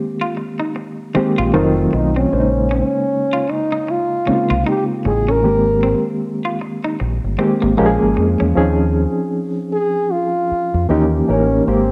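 A reedy, slightly out-of-tune electric piano opens this smooth, late-night R&B excerpt, its fast tremolo and worn cassette tone carrying lush jazz chords over a swung 16th-note feel, joined almost at once by a twangy, slightly broken-up electric guitar that stops at 8.5 seconds. A round, dark fingered bass sits up front from 1.2 seconds, and at 1.9 seconds a French horn takes the solo melody with light vibrato and a classical touch. Moderate spring reverb gives the home cassette recording a soft, intimate room.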